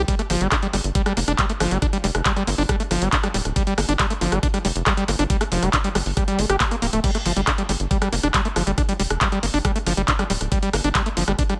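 Intense and hypnotic, this psychedelic trance excerpt drives along at 138 BPM in a straight 4/4, sitting in G minor over a G5 chord. A tight, punchy sequencer bass with a dark, saturated sawtooth-and-square tone and a plucked filter runs low from the very start, driving and evolving. From 0.1 seconds an overdriven acid bass riff joins higher up, squelchy and resonant, its distortion, sidechain pumping and dub echo giving it a gritty, restless edge. Alongside it come a knocking electronic kick drum, re-recorded in a small room, and a layered techno kit of crash cymbal, handclaps, rim clicks and warm hi-hats, re-recorded in a large room. All four parts sit up front under a light reverb, and the piece plays through as a single section before cutting off at 11.6 seconds.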